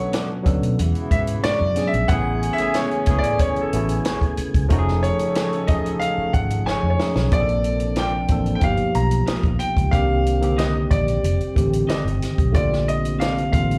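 A clear, up-front concert grand piano carries the melody in this lush, smooth 1970s-style soul excerpt at 92 BPM, taking a solo until 7.3 s, when a drum fill leads into a section in Bb major. Beneath it, a barky, slightly out-of-tune tine electric piano accompanies with slapback echo, a slightly broken-up guitar through a small old amp plays a riff, and a mellow horn section adds stabs in the background until 7.0 s, while a dark tonewheel organ holds sustained chords through a fast rotary speaker. A dry, punchy cocktail drum kit with a high-tuned snare and a round, foam-muted fingered bass complete the band, heard through a venue PA with club reverb.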